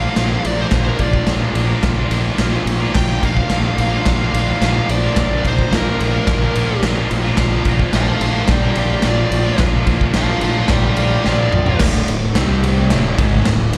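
Heard as a live gig through the venue's PA with recital-hall reverb, this gritty, menacing garage rock excerpt opens on a dark fuzz lead guitar solo over a bright, double-tracked cranked stack guitar riff with spring reverb, a round, overdriven fingered bass and a punchy, saturated drum kit up front, until a drum fill at 11.3 s leads into a brief closing section at 11.8 s, where the lead stops.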